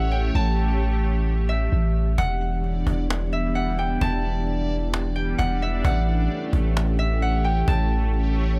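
Atmospheric cloud-rap in a half-time hip hop feel, this ethereal, spacious excerpt sets a bright, ringing concert harp melody with tape echo over a moody, detuned analog pad with chorus and a deep, sine-toned 808-style bass that sits up front. A reversed, granular texture drifts dreamily beneath, while a woody cajon with faint snares enters at 2.2 seconds, its hard hands caught in a small room, as the chords move from A7 to Em7 and back to A7.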